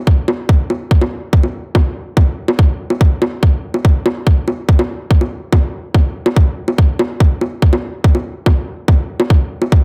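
A dry, up-front sound carries this psychedelic, driving trance passage at 143 BPM in a straight 4/4, cut from a longer piece, where a tight, layered electronic kick drum with a tape-warm tone and room character runs from 0.1 to 9.8 seconds, joined by produced electronic bongos sitting lower in the mix from 0.3 seconds.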